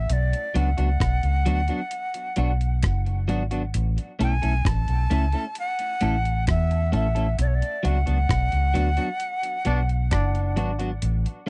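A straight, unhurried roots reggae groove in 4/4 rides on a gritty, compressed sampler-style drum kit of thumpy kick, hi-hat and rim click, while a dark, round, foam-muted fingered electric bass with tube saturation sits up front. A clean, picked electric guitar thickened by lush chorus, tape echo and tube saturation backs a breathy, bright jazz flute melody with vibrato, a crisp chiff and its own tape echo, moving between Bm and A in an uplifting mood. In this fragment of a longer piece, a band accent arrives at 7.4 seconds and a brilliant, distant trombone adds a brief second line from 9.7 seconds, heard in a dry, close 1970s-style studio recording.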